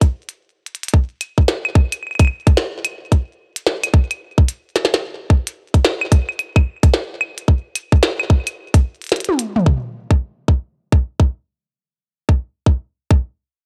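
A tight electronic kick drum sits up front and carries this short IDM fragment, cut from a longer piece, from its opening through to 13.2 seconds. Alongside it, a glitchy electronic drum kit of claves, clicky hats, a tiny snare and toms runs through a digital delay, adding an intricate layer in 4/4 with a swung sixteenth-note feel. The kit plays a drum fill near the end of its run and drops out at 9.6 seconds, leaving the kick to carry the closing stretch alone. Both parts have a tape-warm, produced character, and the dry room with little reverb keeps them close and present. The mood is intricate yet wistful.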